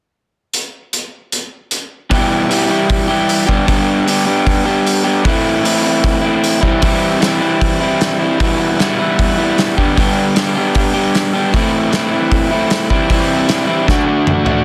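Indie rock in E minor at 153 BPM, moody and cool, cut from a longer piece, opening with a loose acoustic drum kit up front alone, its pumping studio room, tight kick and medium-tuned snare sounding alongside hi-hat and toms. At 2.1 seconds a crunchy, bright overdriven electric guitar enters with a picked riff spanning E2 to G4, cycling through Em, G, Am and C before landing on D. A drum fill at 13.9 seconds closes the passage, all set in light reverb with a dense, heavily limited modern master.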